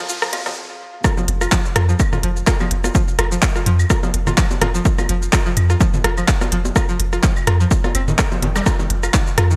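Swung sixteenths in 4/4 drive this sparse, hypnotic minimal techno piece, which opens with a short build-up of a riser, a filter sweep and a brief warbly, lo-fi, mellow pad in the background before a stop and a drop at 1.0 seconds. A crisp, tape-tinged garage kit of handclaps, hi-hat and shaker, electronic rim clicks, bongos, claves and congas treated with digital delay, and a twangy, nasal resonator pluck playing a riff with chorus, delay and sidechain pumping all run from the very start. From the drop, an overdriven, up-front electronic kick and a deep sine sub bass with a pitch-drop attack anchor the groove. A zap punctuates the groove at 8.6 seconds, and the mix has a bright 1980s-style digital sheen with light reverb.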